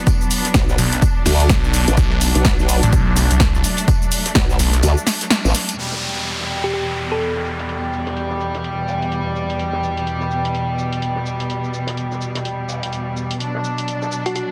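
A wobbling formant-sweep bass, chorused and tube-saturated, drives this aggressive, gritty bass house excerpt alongside a thick, swirling phased saw bass, both pumping against a punchy electronic kick that drops out at 4.8 s, while a lush, vibrato-rich studio string section holds sustained chords throughout. A house drum kit with a punchy snare and low-pass filtered hats, cymbals and percussion runs over a very quiet, dry, cloth-damped acoustic kit, and at 5.8 s a downlifter arrives as a filter sweep begins on the drums. A round, tine-like thumb-piano synth pluck with chorus and delay adds a brief warbling phrase over swung sixteenths, all set in light reverb within a dense, heavily limited mix.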